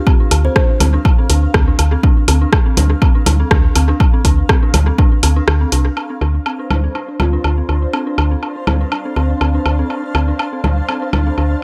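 Hypnotic and sparse, this minimal techno excerpt moves in a steady four-beat pulse with a light swing, built around a single minor-seventh chord in a dry, echo-heavy mix. An up-front, punchy, tape-warm electronic kick drives the first half until about 5.1 seconds, joined by an analog drum machine's hi-hat and rim click, which carry on a little longer, into a short break at 5.5 seconds. A round, woody FM bass sits equally forward and pumps against the beat, while a dark, detuned synth bell repeats an eerie, inharmonic riff through chorus, tremolo, a low-pass filter and analog echoes. Woodblock and congas, re-recorded in a small room, tick through the whole passage with their own delay trails. Behind them a cloudy granular pad evolves and blurs in its own reverb, and a plucked kalimba with a hollow, ringing tone sounds briefly at the start, then returns from 7.2 seconds far in the background.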